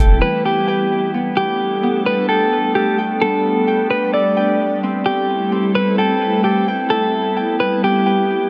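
Dreamy, blissful hip hop in a half-time feel, this short passage drifts through Em, Gadd9 and Am7 before settling back on Em. A clean, dark electric guitar carries the melody up front, its picked, compressed tone softened by a low-pass filter and a warbly pitch drift, with delay trailing its phrases. Beneath it, a glassy FM pad holds sustained chords with a slow attack and long release, its ethereal, full-bodied sound thickened by ensemble chorus and built-in reverb. A bright, ringing Celtic harp fingerpicks arpeggios further back in the mix, also filtered and echoed by delay. All three parts play from start to finish, and a huge ambient reverb with a 4.9-second tail bathes the whole recording in a hazy, floating space.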